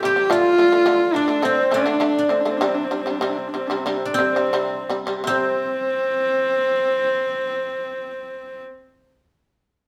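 A wet studio reverb surrounds this short cut from a longer Mongolian folk piece, recorded by a band playing live together in one room. The mood is vast and proud, in 4/4 with a straight feel and a tempo moving between 81 and 108 BPM, slowing down through the opening passage until a new section arrives at 5.3 seconds. Up front, a single bowed horsehead fiddle carries the melody with a biting, husky tone, earthy horsehair grit, light vibrato and sliding portamento between notes. Also up front, a plectrum-plucked, fretless shamisen plays powerful, percussive arpeggios in a lower register, its strings buzzing. Behind them, a guzheng played with fingerpicks adds a ringing, silvery second line. The harmony moves from D5 to C5, all within the C zhi mode.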